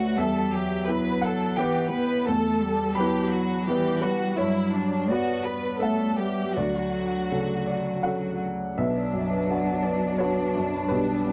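Neoclassical piano and strings in a rubato 3/4, intimate and hopeful, cut from a longer piece. A clear, woody, slightly detuned upright piano sits up front with long sustain, carrying the accompaniment over chords moving from Em through Gmaj7 and Dmaj7 to Bm. A veiled con sordino violin section sings the melody with vibrato, and a single muted cello adds a dark second line with soft attacks and portamento. At 8.8 s a mellow vibraphone, struck with soft mallets and its motor off, joins with ringing arpeggios, all captured in a dry, close 1970s-style studio sound.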